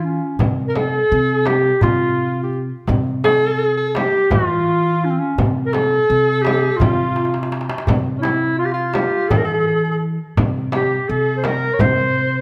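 This Turkish makam ensemble piece in C makam hicaz moves at 168 BPM in eighths through a straight 7/8 with a hypnotic, soulful mood, cut from a longer performance. An up-front, warm, vintage clarinet in classical style carries the melody with tape echo, while a breathy alto saxophone adds a jazz-inflected second line with vibrato, subtone and scooped notes, over a woody, bright pizzicato upright bass. A crisp, deep metal-shelled darbuka sits in the background alongside a softly played frame drum that enters at 0.4 s, with a drum fill at 7.2 s, all set in a moderate recital hall reverb.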